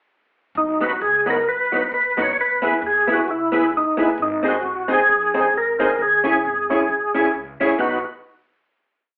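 Ska in B major at 133 BPM with a swung, joyful bounce, led by an up-front percussive tonewheel organ carrying a lightly overdriven call-phrase melody through chorus vibrato and slow rotary speaker, over a woody, thumpy pizzicato upright bass walking with slides, a clean, dark hollow-body guitar chopping the off-beats, and a gritty second organ adding thick off-beat stabs, all heard as a live band in one room through a telephone-like filter and a wet studio reverb before settling on a final B chord at 7.8 seconds.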